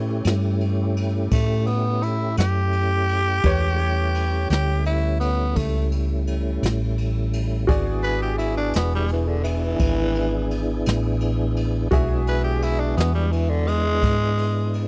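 A growling, raspy tenor saxophone solos up front from 1.3 seconds in this gritty, soulful slow blues at 57 BPM in 12/8, moving from A7 to E7 over a round, dark hollow-body electric bass, a clear tonewheel organ holding lightly overdriven chords through a slow rotary speaker, a worn, woody upright piano, and brushed drums with dark cymbals and a boomy kick, all in a dry, close 1970s-style studio sound.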